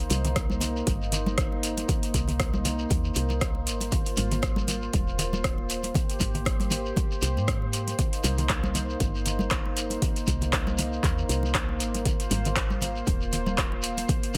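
A smooth, warbling vintage pad with chorus and sidechain pumping opens this earthy, hypnotic afro house excerpt in C minor at 118 BPM, alongside a woody, round FM bass that pumps with it; an overdriven afro-pop kit of handclaps, metallic hi-hats and rim clicks joins at 0.1 seconds with bright, damped congas and a grainy shekere, and a deep, distorted electronic kick arrives at 0.4 seconds, the groove swinging on 16ths over alternating Cm7 and Ab69 chords in a digital ambience.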